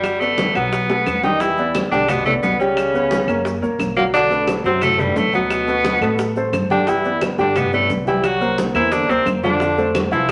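Sophisticated and sunny, this short cut from a longer Afro-Cuban jazz piece moves at a brisk straight four, with a bright, punchy tenor saxophone up front carrying the melody with vintage-toned vibrato and forceful jazz phrasing. A warm baby grand piano accompanies throughout with a natural sound, while a pizzicato upright bass on steel strings adds a dark, growly, thumpy low end. The percussion is layered: ringing, medium-tuned congas struck with hard hands sound distant in a large room, round low-tuned bongos sit close and dry at a very low level, compressed and saturated woody claves tick in the background, and grainy, mellow maracas add a faint dry shimmer. A drum fill at 0.9 seconds leads into the main passage, and from 1.2 seconds a trombone joins in the background with a second line, its vibrato and scooped notes giving a warm jazz counterweight. The harmony shifts through rich chords such as Gmaj9, Em7 and C9, and a wet studio reverb gives the whole mix a sense of space with a slightly rolled-off top end.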